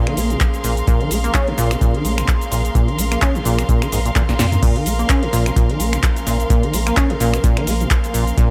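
Driving and trippy, this acid house excerpt runs at 128 BPM in Bb minor with a 16th-note swing, resting on a Bb minor chord. A squelchy, resonant sawtooth acid bass carries the riff, saturated through tube warmth with lush chorus and dub echo, and its filter sweeps give the track its acid character. Beneath it a round sine sub bass enters at 0.2 s and pumps against the deep, tape-warm electronic kick that arrives at 0.4 s. An analog drum machine supplies punchy snare, metallic hats, handclaps, finger snaps, shaker, toms and crash, with a short room on the snare, clap and hats, and a drum fill at 4.2 s leads into the drop at 4.6 s. Behind the groove sit a warbling, lo-fi pad of detuned square and triangle tones with chorus and reverb, and a distant, focused bowed string ensemble with vibrato, both pumping with the kick. The whole mix is wrapped in a light digital ambience.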